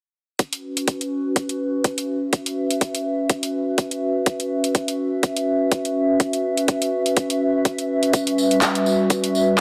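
Bass house at 124 BPM in 4/4, with a 56% swing on the sixteenths giving the groove a gritty, bouncy feel in this short cut from a longer piece, tuned to A4 = 443 Hz. A tight, layered electronic kick sits up front, high-pass filtered, joined by a garage kit of handclaps and metallic hi-hats that holds the pulse from 0.4 seconds. A warbling, tape-like pad enters at 0.7 seconds, ranging from G3 to E5; built from detuned, wave-folded square and triangle tones, it has a slow attack and long release, with chorus, its own reverb and sidechain pumping that lend it a nostalgic, lo-fi, dark character. At 8.1 seconds a high-tuned acoustic snare and tambourine slip in from the background, recorded in a tight booth and high-pass filtered. The whole mix sits in a moderate, lush hall reverb with a 1.9-second decay over small room ambience, while the harmony moves from F#5 to G6.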